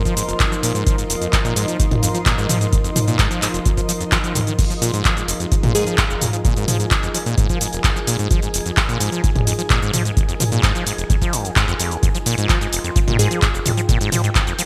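Bright, 1980s-style digital production with light reverb gives this short cut from a longer acid house track a raw, playful sheen at 129 BPM in a straight 4/4, resting on a single Fm7 chord. A dry, deep electronic kick sits up front, joined by a punchy analog drum machine, re-recorded in a small room and treated with gated reverb, that supplies crash cymbal, handclaps, hi-hat, shaker and toms. Underneath, a squelchy, resonant sawtooth acid bass drives a riff with a fast-attack filter pluck, roughened by tube saturation and trailed by digital delay. In the background, a moody, detuned analog pad holds dark sustained chords with subtle chorus and sidechain pumping, while a cloudy, evolving granular pad drifts higher with its own built-in reverb and the same pumping. Twice, at 5.7 and again at 13.2 seconds, a crystalline wavetable pluck chimes a brief Ab4 note, glassy and full-bodied, with chorus and delay.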